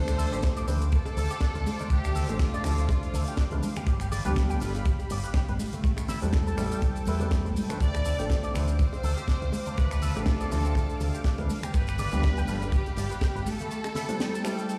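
Cosmic and sensual, this nu-disco excerpt rides a swung groove of a tight, polished kick drum up front, a funk kit with a high-tuned snare, hi-hat, shaker and finger snaps, and bright, hard-handed bongos, congas and tambourine set back in the mix. A fingered electric bass with an envelope filter sits direct and forward until 13.4 s, while a twangy, clean electric guitar with its own envelope filter, analog chorus and dub echo picks a background riff. A dark, mellow grand piano pumps under sidechain with dub echo, a lush, detuned sawtooth unison pad adds chorus and gritty 12-bit sampler texture, and a smooth bowed violin section carries the melody with vibrato, pausing and returning at 7.8 s, all heard as if played on a big sound system in a bare stone room.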